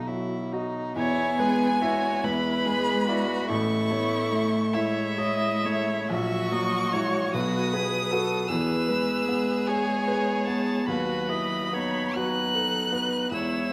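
A violin carries the lyrical melody high above the ensemble from 1.0 seconds, its bowed line focused and sung with vibrato, sitting up front yet with a slightly distant air. This is a slow, romantic classical movement for piano quintet in E major, unfolding in a rubato 6/8 at roughly 42-54 dotted-quarter beats per minute, with a warm, lyrical mood. From the opening moment a second violin and a rich, smooth cello trace supporting second lines, while a baby grand piano provides accompaniment with an intimate, natural tone, long sustain and audible action noise. The viola enters alongside the melody at 1.0 seconds, adding close, focused accompaniment. Harmonies move gently from B through E, E7 and A toward F#7/A#, returning home to E before settling on B/D#, all bathed in a moderate scoring-stage reverb in this excerpt from a longer piece.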